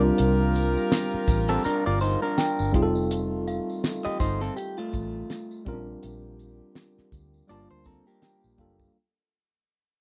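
This rough home demo with light reverb catches a lush, bittersweet, cinematic 1970s-style soul groove in G minor at 82 BPM, swung on the sixteenths and fading throughout. Up front sit a worn, slightly out-of-tune tine electric piano, a dark, round foam-muted fingered bass and a damped drum kit with a fat snare and tight kick, while a jingly tambourine rings from a live room. A very quiet French horn section holds punchy sustained chords beneath opening stabs from a clear pop-style horn section treated with analog delay and plate reverb, a compressed electric guitar on the edge of break-up picks a riff from 1.5 s, a delicate bell-like celesta glints briefly in the background from 2.4 s, and the chords move from Gm9 through F7 and Bb6 back to Gm9 as the electric piano adds a fill from 7.5 s.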